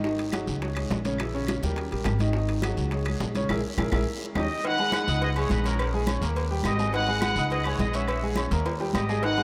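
Driving, danceable salsa at 209 BPM in G# minor, where a clear, up-front concert grand piano with audible action noise and a growly pizzicato upright bass carry the groove over background congas, raspy guiro, ringing timbales and agogo bells, woody claves, and very quiet, saturated bongos and cowbell, all bathed in a vast cathedral reverb, with a drum fill and band accent at 3.5 seconds before a punchy, tight trumpet section with vibrato takes the melody from 4.4 seconds.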